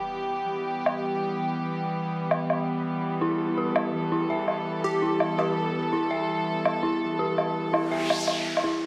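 Tense and spacious, this half-time drum and bass fragment at 166 BPM in E minor opens on dark, reedy chamber strings holding sustained chords, joined at 0.9 seconds by a gritty, rolled-off woodblock, then an eerie, inharmonic detuned synth bell arpeggiating with chorus, sampler grit and tape echo from 3.2 seconds, a brief punchy plucky unison lead note with digital delay, and an electronic noise sweep at 7.7 seconds, all set in a huge ambient reverb.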